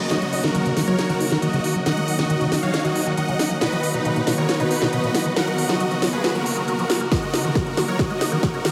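Emotional and euphoric, this uplifting trance build-up in Eb minor runs at 137 BPM in a straight 4/4 and is cut from a longer piece. Huge, lush supersaw chords carry the melody up front, bright and detuned, pumping with sidechain and trailing a diffuse ambient delay as the harmony moves from Ebm through B and Gb back to Ebm. A squelchy, resonant liquid acid bass plays arpeggios beneath, colored by phaser, analog chorus and vintage 12-bit sampler grit, with a filter sweep running through the whole passage. An overdriven techno drum kit delivers a drum fill throughout, pairing a cracking, low-passed snare with smooth, filtered hats, while a heavy, overdriven electronic kick drum arrives up front at 7.1 seconds. A very quiet reverse cymbal and riser frame the opening and closing moments, and the dreamy, high-passed mix is soaked in a huge reverb with a 7.3-second tail.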